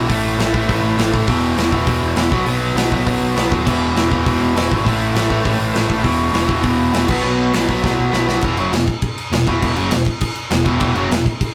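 A biting, overdriven electric guitar leads this upbeat, energetic punk rock excerpt at 202 BPM, riffing up front through power chords on A, E and B alongside a distorted guitar and a double-tracked overdriven guitar that drops out at 8.3 seconds, while a warm, amped picked bass and a punchy big rock drum kit drive it all, with a drum fill at 7.8 seconds leading into a new section in a rough, tube-saturated rehearsal-room sound with stone-room reverb.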